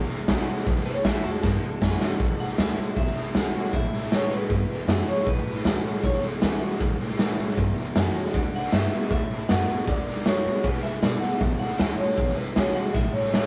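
A raw garage drum kit sits up front with a punchy kick and gritty, saturated tone, driving this rollicking, upbeat rockabilly excerpt at 156 BPM in A mixolydian, where a twangy, slightly broken-up electric guitar through a small old amp carries the melody over a woody, thumpy pizzicato upright bass and a full-bodied picked steel-string acoustic guitar in the background, with a drum fill at 1.4 seconds leading into the next section in a rough rehearsal-room recording with light reverb.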